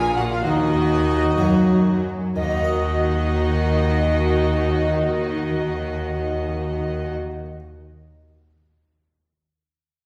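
In a straight 6/8 at 59-70 BPM counted in dotted quarters, this short cut from a baroque-style concerto movement in Eb minor opens by slowing down over its first 2.4 seconds, then moves into a fresh passage at 2.4 seconds that carries a dramatic, driving mood. A rich, focused chamber violin section carries the melody with vibrato, and a smooth, lush studio violin section plays a second line in the background. A tenor recorder joins the melody at 0.2 seconds with a pure, wooden, straight tone and a soft chiff, sounding distant. Beneath them, a distant, even viola section and a round, French-style harpsichord on one set of strings supply the accompaniment, the harpsichord ringing on until 7.6 seconds after the bowed parts stop. The bass is shared by an expressive cello section with soft attacks and portamento and an up-front double bass section with a smooth top, grounding the harmony on an Eb minor chord early on. 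The ensemble is heard from further back in a recital hall whose wet reverb lingers around each phrase.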